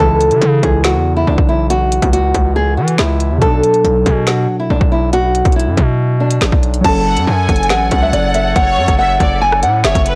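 A blown-out, overdriven recording in a small room carries this menacing, tense half-time drill cut at 140 BPM, where a dark, fingerpicked nylon-string guitar melody with audible finger squeak and tape echo sits up front over warbling, nostalgic lo-fi synth keys with chorus, a heavy, saturated 808-style bass, and a drill kit gritty with 12-bit sampler character, pairing a hard-clipped kick and woody snare with crisp hats, snaps, rim clicks and crash, as the chords move from C#m to Bm to F#m, where an airy flute section enters in the background at 6.8 s and a lush, distant violin section with tape echo adds a second line from 7.1 s.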